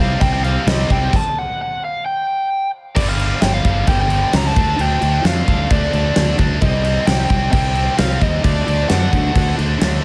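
Aggressive and menacing, this hard rock passage drives at 131 BPM in a straight 4/4 and is cut from a longer piece. A biting, overdriven lead guitar carries the melody in a high register almost from start to finish, while two heavy high-gain guitars play picked, distorted riffs beneath it, one of them set further back. A double-tracked, overdriven electric guitar adds a short riff in the background that drops out at 1.1 seconds. The fuzz-laden fingered bass sits up front with a growly, punchy tone, and a huge arena drum kit with a boomy kick, fat snare and crashing cymbals pounds away in a big-room sound. After an opening on C5, the band hits a stop between 1.1 and 3.0 seconds, then returns to push through G5, Dm, Cm and D, all wrapped in a small room ambience.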